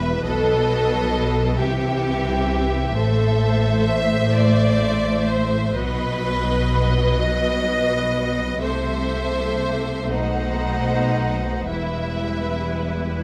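Classical music for string orchestra, this slow romantic movement is melancholic and elegiac, moving in 6/8 at roughly 37-46 dotted-quarter beats per minute with a free, rubato feel. A violin section carries the melody in a narrow upper register, its bowed tone expressive with vibrato and a soft attack. A second violin section plays a clear, intense counter-line beneath it, while the violas supply a smooth, even accompaniment. Cellos give a focused, close bass, and the double basses sit up front with a rich, smooth top. The harmony passes from B7 through C, Am and B, then settles on Em at 11.7 seconds after a darkening B7b9, all within this short excerpt cut from a longer piece. A moderate scoring-stage reverb lends the ensemble a spacious, lingering bloom.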